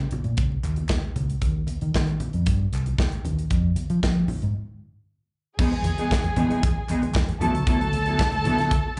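A round, punchy fingered electric bass anchors this joyful, danceable disco excerpt, backed by a mid-forward studio drum kit with crash, hi-hat, snare and kick, low-tuned congas in the background, and very quiet, crisp group handclaps. After a break from 4.5 to 5.6 seconds, a lush, woody bowed string section with slapback echo and a clean, mellow electric guitar with analog chorus and slapback echo enter over Emaj7 and D69 chords. The recording sounds like a live gig heard through the venue's PA, with club reverb and a dulled top end.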